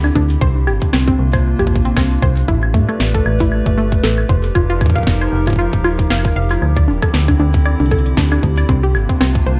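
A metallic FM bass sits up front in this melancholic, intricate IDM excerpt, its dark, fast-attack notes decaying beneath a lightly swung 4/4 groove. Around it, a warbling, tape-like pad holds sustained sus chords with a nostalgic, lo-fi haze, softened by chorus, shimmer reverb and the grit of a vintage 12-bit sampler. A dusty, detuned pluck spins arpeggios above, full-bodied with a noise layer and treated with chorus, digital delay and its own shimmer reverb. The drums come from an electro analog drum machine with a punchy snare, hi-hat and woodblock, overdriven and echoed by digital delay, joined at 0.2 s by a tight, tape-warm electronic kick re-recorded in a large room. The production is dark with light reverb, and the drums drop out at 9.4 s while the bass, pad and pluck carry on to the cut at 9.6 s.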